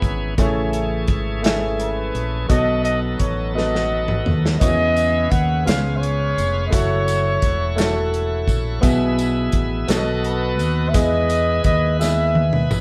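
Soulful and uplifting, this slow gospel excerpt moves at 57 BPM in a straight 6/8, set in E major and played by a band together in one stone-walled room with a moderate reverb. A dark trumpet carries the melody with light vibrato and scooped notes in a jazz style, matched in level by a warm soul drum kit with a tight kick, medium-tuned snare and rolled-off top. A clear concert grand piano with deep bass supplies the accompaniment, while a fingered electric bass, direct and amped, anchors the low end. Further back, a bright, shouting tonewheel organ holds sustained chords with audible key click through a slow rotary speaker. A jingly tambourine joins distantly in the background at 4.6 seconds, just after a drum fill, and another fill closes the passage from 12.0 seconds as the harmony moves through rich seventh chords to settle on Emaj7.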